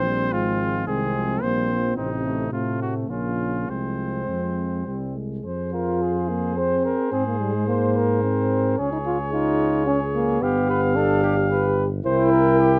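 A brass quintet opens together in F minor at 109 BPM in a rubato 3/4, sounding grave and heroic: a warm trumpet with light vibrato carries the melody over a second line from the flugelhorn, while mellow French horn, trombone and tuba fill out the harmony, the horn set in the background and the tuba up front in the bass. The playing is classical in style, with vibrato across the parts and smooth tops on all but the horn, heard dry and close so that each line stays detailed. After a shift to a new section at 5.4 seconds, the harmony moves through Db and G7 before landing on C7 at 12.1 seconds, where this extract from a longer piece is cut.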